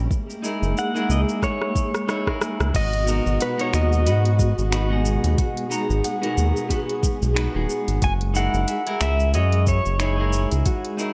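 A relaxed 91 BPM groove in 4/4 with a gentle 16th-note swing drives this smooth sunset chillout clip in G# minor, tuned slightly flat of standard pitch. An electronic kick with a soft, tape-warm thump anchors the beat alongside a produced R&B kit of smooth hi-hats, shaker, finger snaps, rim clicks and crash cymbal, both set in studio reverb, with a drum fill and a band accent leading into the second section at 2.7 seconds. Underneath, a round analog bass sits deep and up front, blending sawtooth, sine and triangle tones into an evolving, sustained low end, while a dark, lush string section holds bowed chords with expressive vibrato. A clean, picked electric guitar accompanies through digital delay, and a twangy pedal steel carries the melody with fingerpicks, slide and volume swells. From 2.7 seconds a mellow concert harp adds ringing arpeggios in the background, as the harmony moves from a rootless F#13 to G#m9 and back to F#13 at 8.0 seconds, all wrapped in a light, digital ambience.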